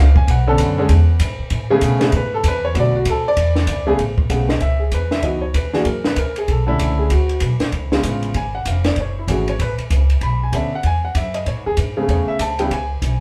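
A grand piano and woody, thumpy pizzicato upright bass open this brief, sophisticated and playful cut from a longer jazz piano trio piece, swinging at 193 BPM in A major, with the compact cocktail kit's dark, smooth ride, hi-hat, high-tuned snare and punchy kick joining at 0.2 seconds, while the warm, natural, up-front piano takes a solo through the first 4.0 seconds and carries the melody over chords such as Amaj9, C#m11, Daug and C#7, all heard as a band playing live together in one room with a wet studio reverb.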